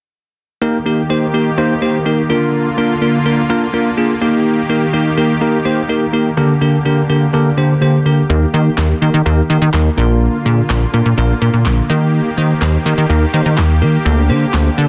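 A bell-like tine electric piano opens this carefree, upbeat dance-pop excerpt, its bright, clean tone sitting up front as it carries the accompaniment in Eb major at 125 BPM in a straight 4/4. Beneath it, a soft supersaw holds sustained chords built from detuned, unison sawtooth voices with a triangle sub octave, giving a smooth, evolving bed that moves through Eb, Bb and Gm/D. At 8.3 seconds a plucky analog bass arrives up front, its funky sawtooth and pulse-wave tone shaped by a fast-attack, decaying filter pluck. An electronic snare layered with handclaps follows at 8.8 seconds, adding a punchy, produced snap. Light reverb surrounds the parts, and the dense, heavily limited modern master keeps the sound full and forward.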